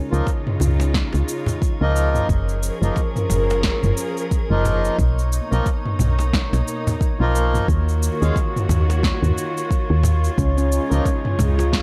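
A round, woody FM bass sits up front in this earthy, warm stretch of organic downtempo, its soft, fast-attack notes decaying darkly beneath a gently swung groove and pumping against the kick. A deep, produced electronic kick anchors the rhythm alongside a punchy, layered deep house kit of cabasa, snare and toms re-recorded in a small room, while a compressed, saturated cajon with faint snares and soft hands sits in the background. A close, lush studio string section holds bowed chords with vibrato, and a reedy, nasal hand-pumped harmonium breathes through its accompaniment with digital delay. A calm, glassy texture of drifting sine overtones hovers high in the background with chorus and a long, reverberant release. At 10.4 seconds a ringing stainless-steel handpan enters with bright, meditative arpeggios struck with sharp finger strokes, echoing through delay as the harmony returns to its home chord in a dark production with light small-room ambience.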